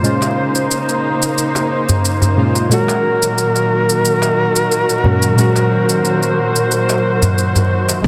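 Hypnotic and earthy, this organic downtempo excerpt moves at 90 BPM in a straight 4/4, resting on a Bbmadd9 chord that shifts to Ebm/Bb at 2.7 seconds. A deep, mellow chord stab with a soft, detuned edge, chorus, delay and sidechain pumping sits alongside a muted, veiled string section playing sustained bowed chords that also pump with the sidechain. An overdriven electronic shaker ticks throughout, while a large, clay-shelled darbuka adds deep, saturated skin tones. From 2.7 to 7.3 seconds a reedy, airy cedar flute carries the melody up front, its vibrato trailed by delay. In the final moments at 8.0 seconds, a punchy, overdriven kick drum, a growly pizzicato upright bass with tube saturation, and a barely audible ringing handpan arrive just as the passage cuts off. A huge ambient reverb surrounds the parts, and the master is dense and heavily limited.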